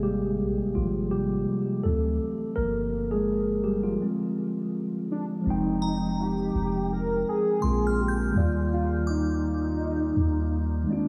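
A mellow, clean tine electric piano and a deep, round 808-style bass open this longing, late-night R&B excerpt with a gentle swing, a velvety, detuned synth lead with chorus, vibrato and analog delay carries the melody from 5.1 seconds, and a crystalline FM bell treated with chorus, phaser and delay glints softly high above from 5.8 seconds, the whole mix steeped in a dreamy, huge ambient reverb.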